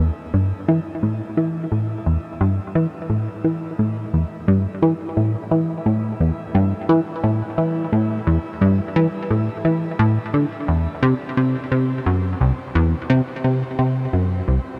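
Set in a straight 4/4 at 87 BPM, this short ambient passage in E minor is cut from a longer piece and carries a cosmic, mysterious mood. A plucky analog bass plays alone from 0.0 to 14.6 seconds, ranging from C2 to E3 and sitting up front in the mix. Its tone is punchy and funky, built from detuned sawtooth and pulse waves with a fast attack, a filter pluck, a moving notch and decaying notes. A delay trails each of its notes. The space is bathed in a moderate shimmer reverb with a long 7.5-second tail, lending the lone bass line a vast, drifting backdrop.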